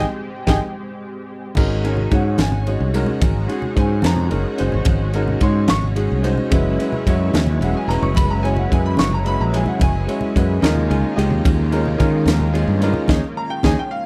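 Dry, with little reverb, this soaring, slick piece of electric jazz fusion in 6/8 at 73 BPM pairs an intimate, boxy grand piano with audible action noise, an up-front fretless electric bass and a punchy, gritty drum kit with a high-tuned snare in a pumping small room, while bright congas with soft hands and a silky, chorused analog string pad sit in the background over sus-chord harmony, the piano adding a fill at 10.6 seconds before a band accent at 13.1 seconds.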